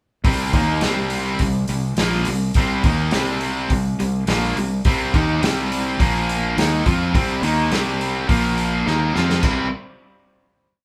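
Classic rock at 105 BPM with a sunny, confident mood, where a bright, up-front distorted guitar power-chord riff and a crunchier spring-reverb guitar behind it ride over a growling overdriven bass doubling the riff in driving eighth notes and a punchy, dark-cymbaled vintage kit with a big groove, all captured as a band playing live in one room until a drum fill at 8.9 seconds leads into the final chord at 9.4 seconds.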